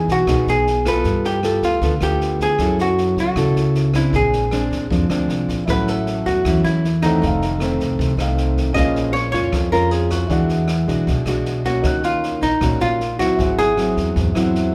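A straight 4/4 bossa nova groove from an open jazz kit, with a boomy kick, rim click and snare, sets a romantic, sophisticated mood as a dark, clean hollow-body archtop guitar carries the melody up front over a fingerpicked nylon-string guitar, a woody pizzicato upright bass and, from 5.7 s, an intimate grand piano with audible action noise, heard in a moderate recital-hall reverb in this short section cut from a longer piece.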